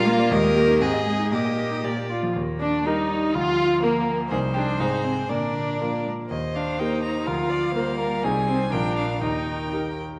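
A dark, roomy recital-hall sound with a long reverb tail surrounds this short cut from a quick, lively and graceful classical-period movement for piano quintet in Eb major, played at 122 BPM in 2/4 with a rubato feel. A clear, smooth violin with vibrato carries the melody while a second, rich-toned violin and a focused cello trace supporting lines, and a close, even viola pairs with the brilliant, up-front concert grand piano, whose deep bass anchors the accompaniment. The harmony circles among Eb, Ab and Bb chords, with a brief opening phrase giving way at 2.4 seconds to a longer second section that settles back on Eb at 9.2 seconds.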